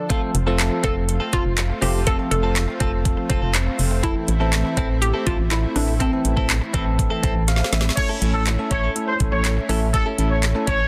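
Dance-pop at 122 BPM in 4/4, bittersweet yet energetic, cut from a longer piece as the chords move from F to Am and then settle on A. An up-front electronic drum kit with knocking kick, woody snare, handclaps, metallic hats and crash plays alongside a dark, percussive, organ-like FM bass. A twangy direct-recorded clean guitar plays a riff through analog chorus, while a bell-like tine electric piano and a lush, detuned sawtooth pad in the background pump with the bass against the sidechain. A bouncy, hollow square-wave pluck carries the melody with chorus and delay until 7.4 s, and after a piano fill and drum fill a distant, roomy horn section with light vibrato and delay takes the tune from 8.0 s, all set in light reverb within a dense, heavily limited master.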